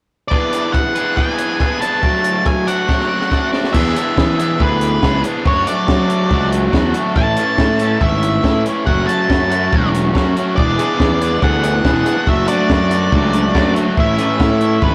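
A compact cocktail kit drives a straight, upbeat 4/4 with a punchy kick, high-tuned snare, rim clicks, hi-hat and crash, its rolled-off top keeping it dark, and a fill at 2.9 seconds brings in a growly, bright fingered bass with fuzz and overdrive at 3.7 seconds. Up front, an overdriven semi-hollow guitar picks a hollow-bodied riff while an octave-fuzz lead guitar carries a distorted, shadowy melody over wistful indie rock changes moving from E7 through Dmaj7/F#, Amaj7 and F#m7. At 10.8 seconds a murky fuzz guitar riff joins in the background, all captured as a rough rehearsal-room recording with tube saturation and light reverb in this fragment of a longer piece.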